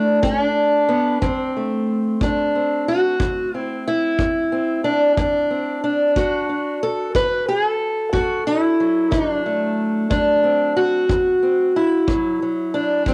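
Recorded at home on cassette with light reverb and small-room ambience, this gritty, soulful acoustic country blues fragment in D mixolydian moves at a slow 61 BPM in 12/8, with a boxy, fingerpicked parlour steel-string guitar carrying the melody up front over a D7 chord while a distant, punchy kick drum played with brushes joins at 0.2 seconds.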